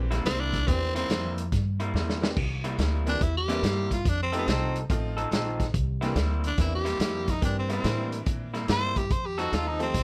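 Jangly, metallic tack piano and woody, thumpy pizzicato upright bass open this rollicking, gritty electric blues shuffle, cut from a longer piece, joined at once by a muffled vintage drum kit with dark cymbals and a tight kick, and by a slightly broken-up, compressed lo-fi guitar riff through a small old amp. A raspy, growling tenor saxophone sits up front with vibrato, soloing through the opening 2.4 seconds as a drum fill rounds off that stretch, then carrying the melody as the harmony moves between C7 and F7. Light reverb surrounds the group.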